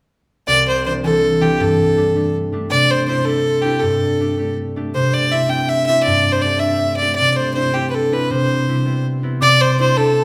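A clear, biting fiddle carries the melody from 0.5 seconds, played up front by one player with light vibrato, an airy bow and an intense, close presence. Beneath it, a mellow, ringing concert harp is fingerpicked from the same moment, supplying an acoustic accompaniment that reaches down into the low register. This rollicking, bright Celtic jig moves at 107 BPM in 6/8 in C major, its harmony rocking between Cadd9 and Gsus2 before touching Cmaj7 near the end of the section. At 9.4 seconds a breathy metal whistle slips in behind, adding a soft-attacked, vibrato-tinged second line high above. The players sound as if in a church or concert hall, with a wet, lingering reverb wrapping the short passage cut from a longer piece.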